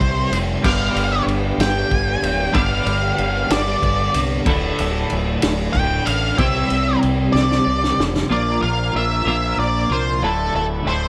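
An octave-fuzz lead guitar sits up front in this hypnotic, trippy psychedelic rock fragment, its dark, distorted picked melody carrying a slapback echo. Beneath it, a double-tracked twelve-string electric guitar plays a bright, twangy riff with tremolo, while an overdriven fuzz bass holds the low end with a warm, forward tone. A tonewheel organ adds very quiet, piping sustained chords with chorus vibrato and audible key click. A vintage acoustic kit with dark cymbals and a punchy kick keeps a straight 6/8 feel, then plays a fill from 7.3 seconds and drops out at 8.3 seconds as the harmony moves from Cadd9, G7 and Dsus2 to Bbadd9. Light studio reverb gives the cut-down passage a roomy, vintage character.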